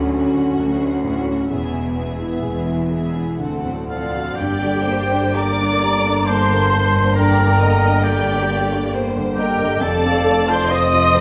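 Cinematic, emotional film score for orchestra, sorrowful and bittersweet, moving slowly in 3/4 at around 60-69 BPM with a rubato feel. A violin section carries the melody with light vibrato and a smooth, even tone, while a second violin line sits softly in the background and a baby grand piano supplies natural, short-sustained accompaniment. Beneath them, a viola section adds lush, expressive support with touches of portamento, a distant French horn section holds dark, tight sustained chords, and rich cello and focused double bass sections anchor the bass. At 3.9 s an airy, hollow flute section and a roomy solo oboe in classical style join with their own second lines. The harmony drifts through major and seventh chords before settling into G minor at 4.4 s, and the whole is bathed in a wet concert hall reverb, cut from a longer piece.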